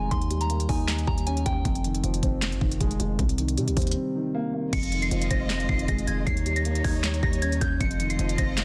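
Eerie and brooding, this short trap excerpt in F minor moves at 156 BPM with a half-time feel, built on a dark, boxy grand piano and a punchy, heavy 808-style bass under an electronic trap kit with a knocking kick, sharp snare, crisp hats, handclaps and crash. A soft, pure FM synth bell carries the high melody through chorus, phaser and tape echo, dropping out after 1.6 seconds and returning at 4.7 seconds, when a close, bowed string section with vibrato and portamento joins with sustained chords. The dry, dense, heavily limited mix cycles through Eb7, Fm7 and Cm7, with a brief break from 4.0 to 4.7 seconds.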